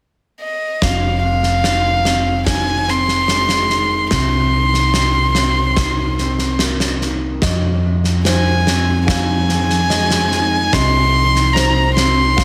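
A slow, straight 73 BPM pulse in 4/4 from a big, punchy rock drum kit and a round, overdriven picked bass carries this brooding, cinematic post-rock excerpt in F minor, where an up-front violin sings an airy, sul tasto melody with light vibrato through analog delay over dark, slightly broken-up guitar arpeggios, a felt-muted upright piano adds mellow arpeggios from 7.4 seconds, and a shimmering, ethereal pad settles in softly at 9.0 seconds, all moving between Fm7 and Cm7 in a large studio reverb.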